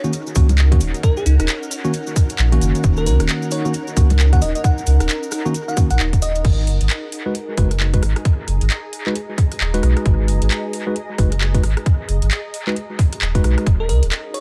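A bell-like FM electric piano melody opens this late-night, moody slice of two-step UK garage, sparkling over chorus and dub echo while a worn, slightly out-of-tune tine electric piano plays stabs through tape echo. Beneath them a very quiet, silky string machine holds sustained chords, a cloudy granular pad drifts with its own built-in reverb and sidechain pumping, and a grainy acoustic cabasa adds texture. A house kit of congas, crash, handclaps, metallic hi-hats and rim clicks enters at 0.1 seconds, and at 0.4 seconds a tight, tape-warm electronic kick and a thick, saturated sub bass arrive up front, all swung at 133 BPM in G# minor. The opening drop rests on D#m7 before the harmony shifts to G#m7 at 6.4 seconds, where the bell piano, strings and cabasa fall away and the tine piano, pad, bass and drums carry on. The bell piano returns briefly at 13.8 seconds as the chord moves back to D#m7, closing a dry, echo-heavy excerpt cut from a longer piece.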